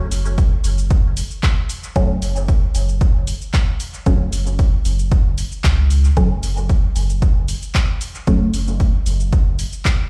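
Dub techno with a hazy, cavernous mood, this short passage is cut from a longer piece and sits on a single F#5 chord in a straight 4/4 pulse. Filtered chord stabs open at 0.0 s, muted and dark yet full-bodied, their detuned sawtooth tone plucked through a filter, then colored by phaser, 12-bit sampler grit, sidechain pumping and dub echo before they drop away at 8.5 s. Underneath, a soft, round sub bass of triangle and square wave sits up front with tube saturation and its own sidechain pumping, holding the low end until 9.6 s. An analog drum machine adds handclaps, hi-hat and shaker soaked in dub echo, while a punchy electronic kick enters at 0.4 s and leads the mix. The whole track sounds as if played on a big sound system in a bare room, bathed in large studio reverb that deepens the sense of space.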